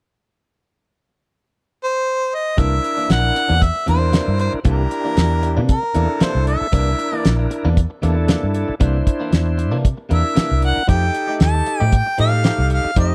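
A dry, close 1970s-style studio sound with small room ambience frames this swaggering, laid-back straight-eighth soul blues, cut from a longer piece. A mellow harmonica with light vibrato, a soft attack and scooped notes takes the jazz-style solo up front, entering alone at 1.8 s before the band joins at 2.6 s. The band is a damped drum kit with a fat snare and tight kick, a round, foam-muted fingered bass, a reedy tonewheel organ with key click, light overdrive and a slow rotary speaker, and a twangy, clean guitar recorded direct that plays compressed stabs in the background through spring reverb and tape echo, all holding a C9 chord until the move to F9 at 10.9 s.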